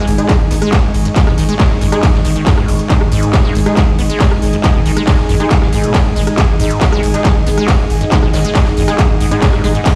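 A squelchy, resonant sawtooth acid riff opens this relentless, industrial peak-time techno excerpt at 138 BPM, joined by a thick, saturated sub bass and an ethereal, airy pad, all three pumping under sidechain, with lush chorus and dub echo on the acid line. By 0.3 seconds an up-front, overdriven electronic kick drives the straight 4/4, over a layered techno kit of crash, ride, handclaps, rim clicks and smooth hats in a small room, plus a very quiet, gritty acoustic kit with a fat snare. Beneath them sit a very quiet, moody wave-folded drone pad and aggressive detuned rave stabs, all heard through a big sound system in a bare stone room.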